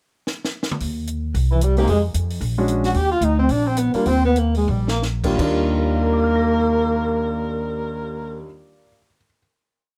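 A mellow, close-miked trombone carries a bebop-style theme with light vibrato, set in plate reverb, in this short, complete small-group jazz piece with a relaxed, swinging feel. At 1.5 s a distant, roomy tenor saxophone with a soft attack and vibrato joins as a second line, doubling at the octave. Underneath, an upright bass sits up front with a woody pizzicato tone from steel strings, playing in two, while a warm grand piano comps in syncopation with rootless voicings. The compact cocktail kit sounds dry and natural, with dark cymbals, a high-tuned snare and a punchy kick, keeping time on the hi-hat with sticks and adding fills. The band slows down into a held final chord at 5.4 s, and the drums drop out just after.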